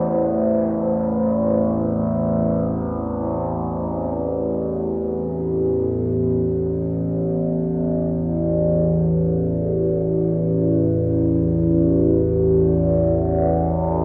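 Through a worn, warbling cassette haze and a huge wet reverb, this ominous, desolate dark ambient drone in free time opens with a deep, detuned pad sustaining an Amadd9 chord until 3.8 s, while an up-front, resonant low drone with moving overtones carries on alone to 14.0 s over a bare A5, cut from a longer piece.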